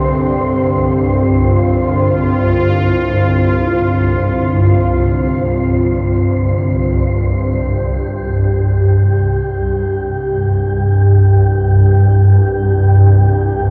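Unsettling and desolate, this dark ambient drone in free time, cut from a longer piece, rests on a swarming, detuned, wave-folded drone held up front in the low register, beneath a bright, full-bodied resonant pad that carries sustained chords with ring modulation, chorus and shimmer reverb until it stops at 7.5 seconds. Above them, a faint, airy, wind-like noise texture breathes in the upper register with shimmer reverb, and the harmony moves from Csus2 to C5 as the pad falls away. Everything sits in a wet cathedral reverb with a long tail, coloured by the warbling pitch drift of worn cassette tape.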